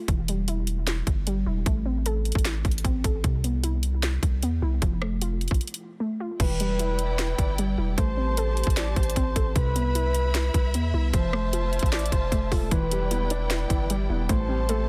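A dense, heavily limited modern master wrapped in digital ambience frames this brooding, menacing trap excerpt in a half-time feel. A warbly, dusty pluck with a lo-fi, detuned character plays arpeggios through chorus, low-pass filtering and digital delay, while a deep, sine-toned 808-style bass sits up front with long, decaying notes. The overdriven trap kit is electronic and produced, with a hard-clipped kick, sharp snare, bright hats, handclaps, rim clicks and crash cymbal. After a short break at 5.6 seconds, the second section at 6.4 seconds brings in a breathy, flute-like synth lead carrying a second line with chorus and delay, along with a lush studio string section holding sustained chords with vibrato and portamento. At 12.7 seconds a felt-muted upright piano adds soft, intimate accompaniment through a low-pass filter, as the harmony cycles through Em, Am, Cmaj7 and F.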